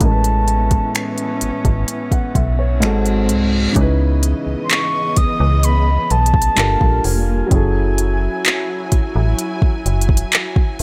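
A late-night, moody contemporary R&B piece at 64 BPM in C# minor opens with an airy, distant concert flute melody carrying tape echo, over an intimate grand piano with audible action noise, dark sul tasto strings and a metallic, fast-attack FM bass. An overdriven R&B kit sits up front with a soft kick, crisp hats, finger snaps and handclaps, while an electronic reverse cymbal sounds from 2.6 to 3.8 seconds as the chords move from Amaj9 and G#7b9 to C#m9. The harmony then passes through Gm9 and F#m9, and the flute stops at 9.9 seconds while the piano, strings, bass and drums carry on in a small room ambience.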